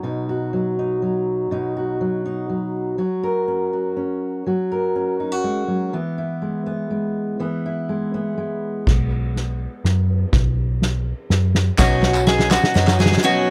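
A fingerpicked steel-string acoustic guitar, up front with fresh strings and audible finger squeak, opens this nostalgic indie folk excerpt alone in 3/4 at 123 BPM in B major, moving through B, F# and E. At 8.9 seconds the arrangement starts to build on a Badd9 chord: a soft-mallet drum kit with a fat snare and boomy kick plays a fill alongside a dark, round hollow-body electric bass. At 11.8 seconds a bright, boxy swing-style acoustic guitar, a woody double-strung mandolin playing arpeggios, a mellow felt-muted upright piano with audible action noise, hollow background handclaps and a very quiet jingly tambourine enter, all within a dry, close 1970s-style studio sound with light reverb.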